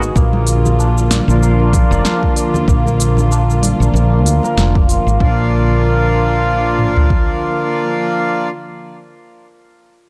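This is a mystical, earthy organic downtempo excerpt in B-flat major at 95 BPM, with a 16th-note swing. It opens with a reedy, breathing pedal harmonium up front, sustained chords from a dark, intimate string section played sul tasto with light vibrato, and a woody, round fretless electric bass, all with sidechain pumping. Over them, a shimmering hammered santur plays arpeggios through a low-pass filter and analog delay, while the harmonium carries its own delay and a filter sweep that runs until 5.2 s. The deep house kit brings a punchy kick, toms, snare, cabasa and smooth hi-hats, and very quiet congas ring softly beneath it. At 5.2 s the snare, hats and cabasa stop, the kick and toms carry on to 7.3 s, and the santur plays last, until 9.5 s. The sound is dry and gritty, with transformer saturation from hardware, set in studio reverb.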